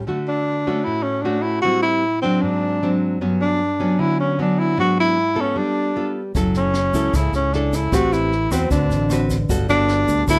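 Bossa nova in D major at 153 BPM, this short cut from a longer piece feels sophisticated and sunny. A full-bodied, fingerpicked nylon-string guitar sits up front from the start, moving through rich chords such as Dmaj7, G#7#11 and Gmaj7#11, while a breathy tenor saxophone enters almost at once with an intimate, whispered solo line full of vibrato, scooped notes and a soft attack. At 6.3 seconds the band fills out: a punchy, warm fingered electric bass arrives alongside a small-room brush kit with a high-tuned snare, rim clicks and a boomy kick. A grainy, mellow tube shaker joins a moment later, tucked well in the background. Light reverb gives the sound a gentle sense of space as the harmony drifts through F#m7, Am9 and D6 to close on Gmaj9.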